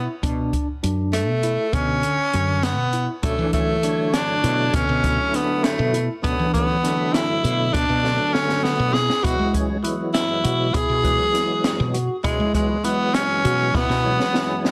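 A raspy tenor saxophone leads up front, its scooped notes and light vibrato carrying a tense, brooding melody over a progressive instrumental groove in 5/8 at 200 BPM in B dorian. A gritty, overdriven tine electric piano with fast tremolo spins arpeggios in the background, while a woody, round fretless bass and an open jazz kit with a high-tuned snare and boomy kick hold the uneven meter, the drums adding fills at 8.0 and 13.7 seconds. From 3.2 seconds a fat, percussive tonewheel organ with key click, chorus vibrato and slow rotary speaker fills out the harmony as the chords move from Bm7 to Eadd9/B, all within light reverb and a dense, heavily limited modern master.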